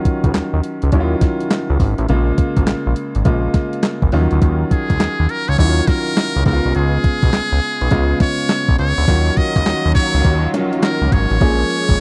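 Punchy and slick, this short cut from a longer new jack swing R&B piece moves at 103 BPM in Eb minor with a swung sixteenth-note feel. A crisp 8-bit drum machine sits up front with a thumpy kick, medium-tuned snare, handclaps, hi-hat and crash, its sampler-style tone carrying a tape-warm edge, while a fat, nasal analog bass with a detuned sawtooth bite and filter sweep anchors the low end. A clear, open baby grand piano supplies accompaniment through chords that move from Ebm9 to Bbm7 and Db7. At 4.7 seconds a trumpet with a metal mute takes the melody, its brilliant, buzzy, thin tone close-miked with light vibrato and a slapback echo. At 9.1 seconds a lush bowed string section slips in behind with smooth, sustained chords as the music reaches a new section. The whole has the dry, close sound of a 1970s-style studio.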